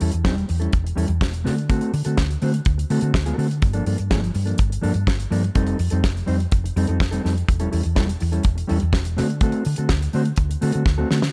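A straight 4/4 disco groove at 124 BPM, this sultry, danceable excerpt pairs a damped 70s drum kit, dry and up front with a fat snare, tight kick and hi-hat, with a round, dark hollow-body short-scale fingered electric bass and a mellow, clean electric guitar whose pitch drifts with a warbly waver, moving through A7/E, D7, Gm9 and F9 before a drum fill at 10.9 seconds.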